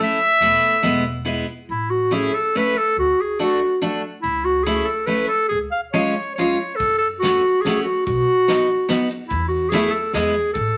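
A straight 3/4 lilt at 142 BPM drives this bouncy, festive alpine folk dance-band piece in A major, heard as a short cut from a longer performance. A bright, present clarinet carries the melody up front in a classical style, sitting as a solo voice between E4 and E#5. Beside it, a full-bodied picked dreadnought steel-string guitar supplies the accompaniment, while a woody pizzicato upright bass on steel strings holds the low end from 0.4 seconds. A loose indie drum kit arrives at 6.8 seconds with a punchy kick, a medium-tuned snare and dark ride cymbal, captured in a small room. The harmony moves from Esus4 and E through A, D, A/C#, C#, F#m and B before returning to Esus4 and E, all set in a wet studio reverb.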